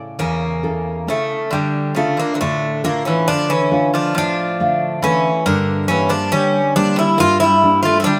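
Wistful and reflective, this short cut from a longer Greek folk piece moves at 137 BPM in a straight 9/8, set in D harmonic minor, with chords passing from A to Dm and on to Gm at 5.5 seconds. An up-front bouzouki carries the picked melody with a bright, metallic ring from its doubled strings, some paired in octaves, while a second bouzouki enters at 0.2 seconds with a lower supporting line. A full-bodied, fingerpicked nylon-string guitar, also forward in the mix, gives a deep classical accompaniment, and the band sits in a moderate plate reverb.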